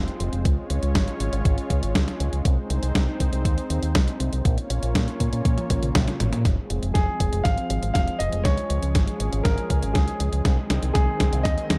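Bittersweet and danceable, this italo disco passage rests on a smooth, detuned sawtooth pad with chorus holding sustained chords. Beneath it sit an up-front fingered electric bass with an envelope filter and tube saturation, and a thumpy overdriven electronic kick alongside a clean 12-bit drum machine's hi-hat, medium-tuned snare and toms, both drum sources re-recorded in a large room. A drum fill at 5.5 seconds leads into the second section, where a concert grand piano with deep bass enters at 6.9 seconds to carry the melody through a low-pass filter and delay, all within a dark, warm production with light reverb and digital ambience.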